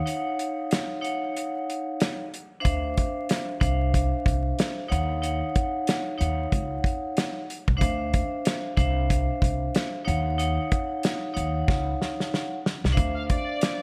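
Bright 1980s-style digital production with vinyl crackle and light reverb frames this moody, dark boom-bap hip-hop fragment, where a ringing, metallic vibraphone played with hard mallets and given a filtered cassette-tape tone sits up front beside an acoustic soul drum kit with a tight kick, medium-tuned snare and rolled-off top, while a woody, growly pizzicato upright bass joins at 2.7 s as the swung harmony alternates between Ebm9 and Dm9, a drum fill arrives at 11.7 s, and a lush, bowed violin section with smooth vibrato surfaces at 13.2 s just before the cut.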